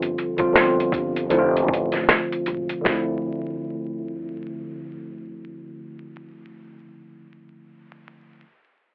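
A swung 4/4 groove from a muffled, pitched-down sampler drum kit with a thumpy kick and fat snare opens this reflective, hazy lo-fi hip hop excerpt before dropping out at 3.1 s, while a woody pizzicato upright bass continues until 6.8 s and a worn, slightly out-of-tune tine electric piano, filter-swept over the first 2.9 s, carries on alone to 8.4 s, all wrapped in a cassette home-recording sound with vinyl crackle, a telephone tone and a small booth ambience.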